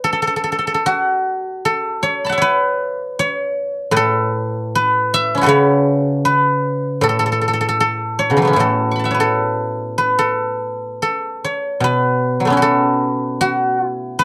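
The rhythm moves freely in rubato, loosely anchored around 77 BPM in 4/4, giving this brief fragment of Chinese traditional solo plucked-string music an unhurried, breathing pulse. A lone guzheng carries the whole passage from 0.0 to 14.2 seconds, played with fingerpicks and spanning a broad range from A2 up to C#6. Its tone is silvery and ringing, placed up front in a light reverb that keeps the acoustic instrument close and clear. The music sits in an A gong mode with the tuning set to A4 = 445 Hz, and the mood is elegant and serene throughout. At 11.8 seconds the piece moves into a new section that carries on until the fragment ends at 14.2 seconds.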